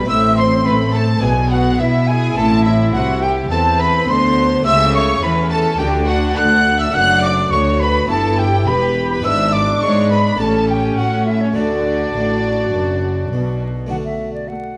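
A wet recital-hall reverb and vinyl crackle frame this brilliant, festive cut from a longer baroque-style concerto movement, moving at 105 BPM in a straight 4/4 that opens around A minor and settles into D major from 4.7 seconds. A pure, straight-toned concert flute carries the melody, its tongued notes riding high. A lush studio violin section also plays the melody with smooth vibrato, while a chamber violin section sings a second line beneath it. A chamber viola section and an airy, plucked harpsichord, set back in the mix, fill in the accompaniment. A chamber cello section sits in the background on the bass, and a focused, up-front double bass section anchors the low end until it drops away at 13.9 seconds, just before the cellos stop at 14.4 seconds.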